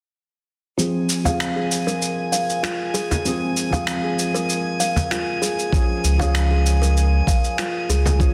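Hypnotic and meditative, this organic downtempo excerpt opens with a soft, felt-muted upright piano, its action noise audible under a filter sweep, sidechain pumping and delay, alongside a woody, ringing kalimba playing arpeggios and gritty, sampler-style cabasa and finger snaps, with glassy drifting overtones and a deep, dry frame drum played with hard hands joining soon after. At 5.7 seconds the harmony moves from F minor to D-flat as a thumpy, up-front electronic kick arrives, followed at 6.0 seconds by a round, sustained sine sub bass. A moderate concert hall reverb surrounds the dense, heavily limited modern master.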